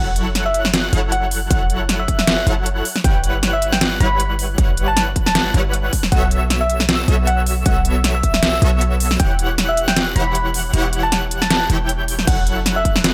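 Lush and emotional, this future bass excerpt sits in a half-time feel with a light swing on the sixteenths, cut from the drop of a longer piece. A round, keys-like FM lead carries the melody with chorus, vibrato and tape echo, while an airy, detuned lead spins bright arpeggios high in the background. A punchy sawtooth supersaw stab plays the riff with a filter pluck, and a deep, boomy 808-style sine bass sits up front, with every one of these parts pumping against the sidechain. The layered dubstep kit brings a deep snare, crisp hats and crash cymbals from the start, and a tape-warm electronic kick joins at 1.5 seconds, drops out at 9.3 seconds and returns at 12.3 seconds. At that last point a very quiet, close studio string section adds bowed sustained chords beneath the harmony, which moves from F#m7 through Em69/G and B9sus4 before circling back, all washed in digital ambience.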